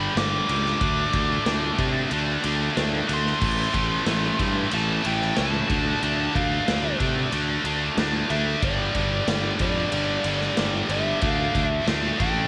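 A home cassette recording with light reverb captures this short, menacing hard rock cut from a longer piece, moving at 92 BPM in a straight 4/4 through chords such as G5, Am and Dm. Two high-gain distorted guitars, one of them scooped, pound out a picked riff while a growly, fuzz-laden fingered bass sits up front, and a big acoustic drum kit with a punchy kick, medium-tuned snare and bright crash and ride cymbals joins at 0.2 seconds. Over the top, a biting overdriven lead guitar with a cassette-tape tint carries the aggressive melody.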